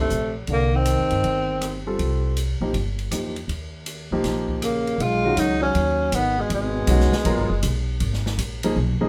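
Spiritual and searching, this short modal jazz excerpt swings in 4/4 as a breathy, whispered tenor saxophone with vibrato, soft attacks and scooped notes carries the melody over a punchy, close-miked trombone second line. The two horns fall quiet at 1.9 seconds and return at 4.6 seconds, just before the harmony shifts at 5.0 seconds from Cm7 and Eb7 to a G#m11 chord. Beneath them, a baby grand piano with short sustain comps up front, a thumpy, woody gut-string upright bass anchors the low end, and a small-room drum kit adds dark cymbals, rim clicks and a boomy kick, all set in a moderate studio reverb.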